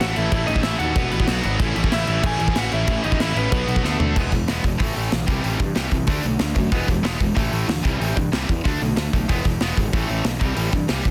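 Straight, driving four-four punk rock with a rowdy, rebellious edge, this dense, heavily limited fragment opens with a dark, slightly broken-up lead guitar melody over a scooped high-gain guitar riff in the background, the lead stopping at 4.0 seconds and the scooped guitar at 4.2 seconds after a drum fill, while a tight, double-tracked distorted guitar riff, a fuzzy picked electric bass and a big, up-front rock drum kit with a punchy kick and crashing cymbals drive on through 11.1 seconds with little reverb.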